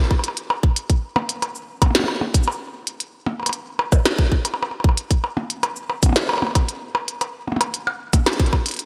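A straight 4/4 pulse at 114 BPM drives this glitchy, melancholic IDM excerpt, where a tight, up-front electronic kick drum sits beneath a glitchy kit of tiny snare, clicky hi-hats, cabasa and percussion blips treated with gated reverb and digital delay, all set in a lush hall and a bright 1980s-style digital production.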